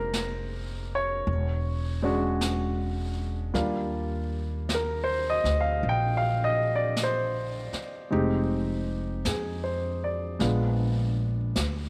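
A warm baby grand piano sits up front, playing accompaniment with a natural, short-sustained tone in the middle of its range in this intimate, late-night jazz ballad. The pace is slow at 53 BPM in 4/4, with a gentle swing on the eighth notes and a home key of Eb major. A pizzicato upright bass on steel strings holds the low end, its woody, thumpy sound also placed up close. A brushed drum kit joins at 0.1 s, with brushes on a medium-tuned snare alongside hi-hat, sitting a little quieter in a natural studio room. The harmony drifts from Fm11 and E13 to a lingering Ebmaj9, then turns through Fm7 to Bb7b9 near 10.4 s. A small room reverb adds a close, cozy space to this brief passage, which is cut from a longer piece.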